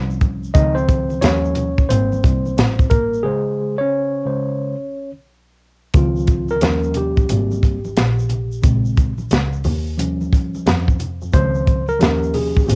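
A dry home cassette recording with a faint mains hum sets a nocturnal, cool jazz-hop mood in this short cut from a longer piece, its sixteenths swung in an easy hip hop pocket. A worn, mellow tine electric piano sits up front with a taped, slightly out-of-tune character, soloing across the whole clip over ninth chords that move between Eb9, Dbmaj9 and Abmaj9, touching Bbm9 in the second half. Beneath it, a single bowed double bass plays with a rich, soft-attacked tone, leaning on vibrato and portamento for an expressive, close-miked line. A compact cocktail kit in a small room supplies a punchy kick, a medium-tuned snare and hi-hat, its dark, smooth sound rolled off on top and placed up front. Egg shaker and congas played with soft hands hover compressed and saturated in the background, while a break from 3.2 to 5.9 seconds, resting on Abadd11/Db, leads into the second section.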